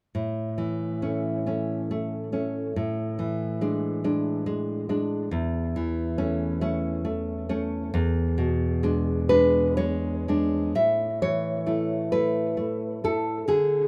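A slow, rubato lilt in 6/8 carries this nostalgic, romantic solo piece for classical guitar, cut from a longer work. The fingerpicked nylon-string guitar sits up front with a full-bodied, deep tone, touched by analog delay and a wet small-room reverb that gives the rough home-demo sound an intimate, warm glow. A new passage begins at 10.8 seconds, returning to the opening chord before the recording ends at 13.9 seconds.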